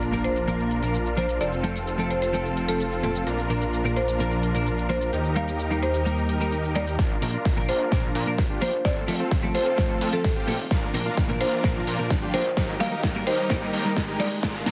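A buzzing marimba struck with hard mallets carries the melody with a dry, woody, band-limited tone and digital delay, riding over bright supersaw chords that pump with sidechain, a low-pass filter that sweeps from 7.0 s, and a thick detuned saw bass in this triumphant, anthemic festival progressive house cut at 129 BPM in Bb major. A dark, clean picked electric guitar with analog chorus, a very quiet airy pad, and a big-room kit with a huge snare and filtered hats fill out the arrangement, while a very quiet sub drop and riser mark the opening impact and the build-up. A punchy, up-front electronic kick arrives at 7.0 s as the drum fill and build-up begin, all under a heavily compressed, radio-like sound with light reverb.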